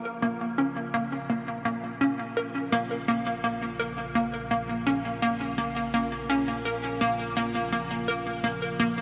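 Hypnotic and cosmic, this ambient, sequencer-driven space music rests on a single B-flat minor chord, where a hollow, bouncy square-wave pluck with a bright, detuned bite sits up front, repeating its riff through lush chorus and delay. Beneath it, a mellow, morphing wavetable pad holds sustained chords with slow attack, and a fat, nasal analog bass stays in the background; both fade in across the whole 9 seconds. The dreamy mix is soaked in a huge, wet reverb, and the passage is cut from a longer piece.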